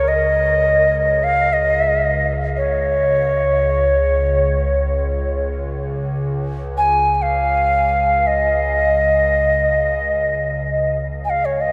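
World meditative music in free time, this peaceful, calm excerpt sets a mellow, airy cedar flute up front with a straight, tongued tone and a breathy chiff, its delay trailing over an evolving, detuned wavetable pad that holds a low sustained drone through chorus, all soaked in a huge, dreamy reverb.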